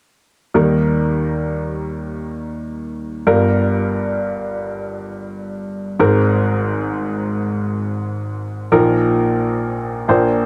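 Close, detailed and nearly dry, this intimate, nostalgic folk fragment in 6/8 at 44 BPM (dotted quarters), cut from a longer piece, sets a clear baby grand piano up front, its natural tone and short sustain carrying the melody from 0.5 to 10.5 seconds across Eb, Gm7, Abadd9 and Bbsus4 in Eb major.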